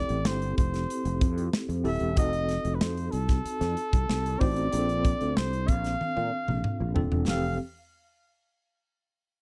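In a straight 4/4 groove, this short, upbeat cut of polished 1980s jazz-funk pop pairs a punchy, up-front studio drum kit with a growly fretless bass treated with analog chorus, while a worn, slightly out-of-tune tine electric piano adds mellow tremolo and lush chorus over Fmaj7, F7b9 and Bbmaj9 harmonies. A warm flugelhorn carries the melody in a present pop style, with vibrato and scooped notes. The sound is dry and close, and a drum fill from 6.0 to 7.3 seconds leads into a new section.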